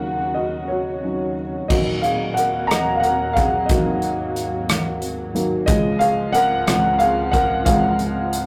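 In a straight six-eight feel, this heartfelt, romantic pop ballad fragment features a worn, woody, slightly detuned upright piano with long sustain up front, over lush bowed strings with expressive vibrato, while an acoustic drum kit with a punchy kick, rim clicks, hi-hat and bright crash cymbals joins at 1.7 seconds, all set in a rough rehearsal-room sound with tube saturation and light reverb as the harmony moves from D#m7 through D#m to C#.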